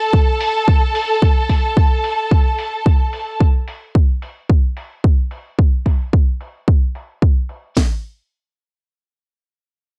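Sleek, cosmic nu-disco cut from a longer piece, with a light 16th-note swing: a lush, bowed string section holds smooth, vibrato-rich sustained chords that pump against the sidechain until 3.4 seconds, while an up-front house kit with a punchy kick and cracking snare runs under a filter sweep until 7.9 seconds, joined by a compressed, gritty, sampler-style hi-hat, muffled by low-pass filtering and re-recorded in a large room, inside a dry hardware-recorded ambience.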